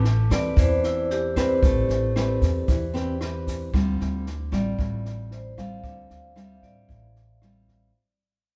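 A straight 4/4 bossa nova groove carries this melancholic, intimate fragment, cut from a longer piece and fading out across its 7.9 seconds, as a dark, ringing vibraphone with slow motor vibrato takes the solo over fingerpicked, full-bodied nylon-string guitar, a woody, growly pizzicato upright bass and a dry cocktail kit with punchy kick, high-tuned snare and rim click, while a grainy tube shaker sits in the background from 0.3 to 3.7 seconds and the band plays live in one large studio room with moderate reverb as the chords move from Am9 to Dm7.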